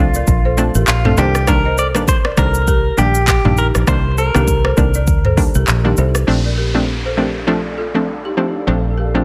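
A romantic, joyful afrobeats groove at 100 BPM in Bb major opens with a clean, twangy electric guitar melody carrying spring reverb and delay, over a hollow, detuned square-wave pluck with chorus and a punchy, foam-muted fingered bass sitting up front. The electronic afro-pop drum kit comes in at 0.1 seconds with a deep kick, crisp hats, handclaps, rim clicks, shaker and toms, its 16ths swung for a relaxed lilt. A woody, buzzing balafon riff struck with hard rubber mallets joins at 0.2 seconds, its delay lending a soft echo. The harmony moves from Bbmaj7 to Cm7 and settles back on Bbmaj7 as the guitar drops out at 5.9 seconds and the drums stop at 6.3 seconds, where an electronic downlifter enters. A mellow, cloudy granular pad then drifts in far in the background at 7.4 seconds, blurring this short excerpt's close into a haze of digital ambience.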